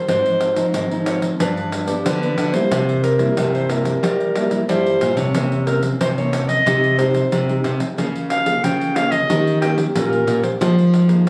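Nostalgic yet lively, this fragment of samba and choro moves at 91 BPM in a straight 4/4, with a mellow, present clarinet carrying the classical-style solo melody up front over a fingerpicked nylon-string guitar, a second thumb-plucked nylon-string guitar with fresh strings holding the bass, and a jingly pandeiro struck with hard hands, as chords from Ab6 to Fm7 pass through a moderate studio ambience captured on a phone in the room with club reverb and compression.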